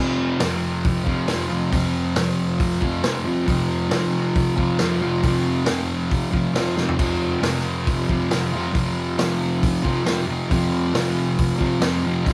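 Raw and rowdy, this short garage rock cut from a longer piece moves in a straight 4/4 with the energy of a small band playing live in one room. A dark, fuzz-drenched electric guitar opens at 0.0 seconds, picking a low riff on an F5 power chord between F2 and F3; it's double-tracked and sits up front in the mix. A vintage acoustic drum kit joins at 0.4 seconds with punchy kick, a medium-tuned snare, hi-hat, toms, and dark crash cymbals, its mid-forward sound rolled off at the top. A drum fill arrives at 6.8 seconds as the guitar riff keeps driving underneath. A moderate large-studio reverb lends the whole performance the feel of a lively, roomy space.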